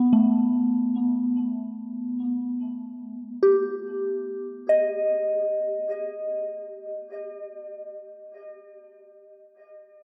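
Ambient music with a melancholic, reflective mood, this short passage is lifted from a longer piece. A soft FM synth bell plays alone from 0.0 to 10.0 s, sitting up front with a pure, mellow tone whose fast attack gives way to a gentle decay. Chorus and a diffuse ambient delay add shimmer and haze to its notes, which range from A3 to Eb5. The harmony rests on G before shifting to Eb/G at 4.7 s, where a second section begins. A wet concert hall reverb with a 2.2-second tail surrounds the bell, lending the recording a spacious, contemplative air.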